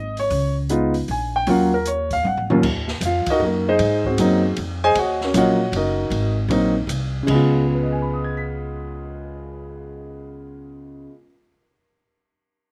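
The recording is dry and open-air, with barely any reverb, and it opens on a playful, relaxed jazz piano trio swinging in three. A grand piano carries the melody, sounding natural and up front as it ranges from the low register high into the upper reaches of the keyboard. Beneath it, a pizzicato upright bass on gut strings gives a woody, thumpy foundation, with harmony moving from Db7 through Ebm7 and Ab7. The acoustic drum kit sits further back, with dark cymbals, a medium-tuned snare, a boomy kick and a rolled-off top across ride, hi-hat, crash, toms and cymbal swells. A short drum fill at 2.2 seconds leads into a new section. The drums fall away at 9.5 seconds, and piano and bass carry on briefly before this excerpt from a longer piece ends.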